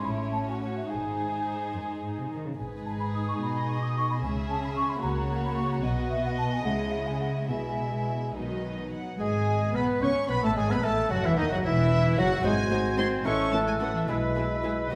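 A rubato 6/8 lilt drives this quick, dramatic and urgent classical-period orchestral movement, where a chamber violin section sings the melody over a second violin line, a background viola part, close cellos and dark double basses, all bowed softly sul tasto with vibrato. An airy, hollow small flute group adds a crisp second line above. At 9.2 seconds the music shifts to a new section as a distant, roomy oboe, a mellow solo bassoon and a very quiet horn section holding sustained chords join, all in a reverberant recital-hall space.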